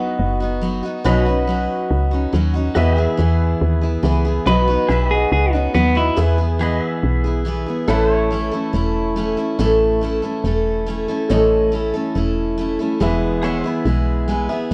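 Heard through the wobble of a worn cassette tape, with its warbly pitch drift and a light touch of reverb, this easygoing, sunny slice of honky-tonk and classic country is cut from a longer piece and moves in a straight, steady four. A full-bodied dreadnought acoustic guitar is picked up front, while a soft, round FM bass with a woody, fast-attack, decaying tone anchors the low end. A warm pedal steel, played with fingerpicks and slide, holds sustained chords with volume swells, and a dark, vintage upright piano stays mellow and smooth in the background. At 4.5 s a bright, twangy, compressed electric guitar steps forward for a brief second line, trailed by tape echo. The harmony moves from B through Badd9 to E, then shifts to A when the second section arrives at 7.9 s, and the upright piano slips in a short fill at 14.1 s just as the clip ends.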